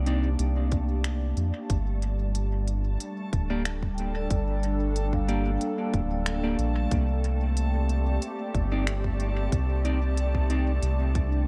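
A straight 4/4 pulse at 92 BPM anchors this hazy, meditative ambient dub passage, cut from a longer piece. A tight, tape-warm electronic kick arrives at 0.7 s beneath an organic electronic kit of finger snaps and smooth hi-hats that carry dub echo. A round, deep analog bass sits up front with tube saturation, while an airy, breathy pad holds sustained chords through chorus. A vibraphone played with soft mallets spins ringing, close-miked arpeggios into dub echo, and a mellow, clean electric guitar adds fingered stabs roughened by vintage 12-bit sampler grit and echo, stopping at 10.7 s. Underneath, a reversed, dreamy granular texture swells in its own built-in reverb, and the harmony moves from Cmadd9 to Gm and then Csus2 in a dry, close-feeling room.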